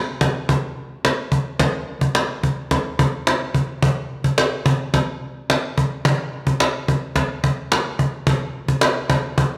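A straight 4/4 pulse at 108 BPM drives this blissful, dreamy dream pop fragment, carried entirely by a cajon that enters at 0.2 seconds and plays until 9.5 seconds. The cajon sounds woody and vintage, struck with hard hands and sitting up front, with faint snares and a band-limited tone. A moderate recital-hall reverb surrounds it, lending the short clip from a longer piece a soft, airy glow.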